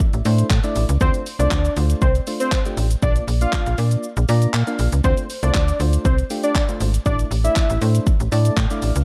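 A house drum kit and soft, electric-piano-like synth keys open this energetic dance-pop excerpt in D minor at 119 BPM, joined almost at once by an up-front, slap-like FM bass with a snappy, metallic attack. The drums are punchy and layered, with kick, handclaps, hi-hat and shaker, while the bass and the round, mellow keys carry sidechain pumping that gives the straight 4/4 groove a driving feel. A fat analog lead arrives at 1.0 seconds with a warbling, detuned vintage tone, vibrato and chorus, carrying the melody over a progression of Asus4, Dm7 and Bb. The kick drops out at 4.0 seconds while the keys play a fill, and the keys fill again from 8.1 seconds. The production is dark and dry, with little reverb.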